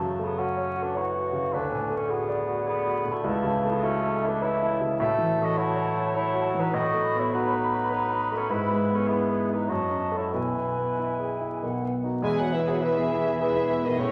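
Romantic classical music for piano and orchestra in a lyrical, lush vein, flowing in 3/4 at 103 BPM with rubato, moving from A major toward E major around 5.0 s. A clear, up-front concert grand with deep bass carries the melody over a dark woodwind bed: a present clarinet, a distant, roomy cor anglais and an airy flute section share second lines while a bassoon with light vibrato provides accompaniment. At 12.2 s the strings arrive with vibrato, the violins split between a very quiet melody and a smooth-topped second line above rich violas, warm cellos and woody basses, while trombones, French horns and hard-mallet timpani sit barely audible, all bathed in a recital-hall reverb with vinyl crackle in this short extract.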